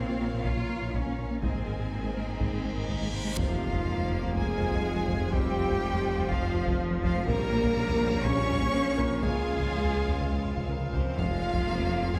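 Set in a wet recital-hall reverb, this brooding, relentless excerpt of a hybrid orchestral and electronic film score moves at 123 BPM in 4/4 through Bb minor and F minor harmonies. Two bowed violin sections carry the melody and a second line over mellow French horns, a distant viola section, lush cellos, a very quiet double bass section and a faint grand piano. Beneath them sit a round analog bass riff, a punchy sub bass with a pitch-drop attack, soft dark pluck arpeggios and an eerie, metallic FM drone, while a taiko ensemble with heavy sticks drums from 0.4 seconds; a reverse cymbal leads into an electronic impact at 3.4 seconds, a focused solo cello with delay takes up the melody from 3.1 seconds, and a very quiet tuba joins the bass.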